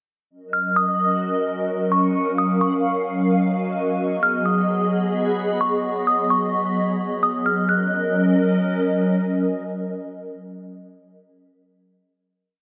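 A delicate, tinkling synth tine bell carries the melody from 0.5 s, its bright FM tone treated with chorus, phaser, tremolo and delay as it circles a sparse looping figure high in the register, repeated like a sampled loop. This short, complete piece of atmospheric cloud-rap moves at 130 BPM in a half-time 4/4 feel in Eb minor, spacious and melancholic in mood. Beneath the bell, a hollow, flute-like pad holds sustained chords through an ensemble chorus, its detuned, vintage warble and slow attack giving the harmony a mellow, up-front presence as it moves from Ebm7 to Abm7. A reversed, dreamy texture swells in more faintly from 1.1 s to 5.8 s, its granular grain bathed in its own reverb. The opening breakdown gives way at 7.7 s to a final Ebm7 chord, with the whole mix set in a lush hall reverb.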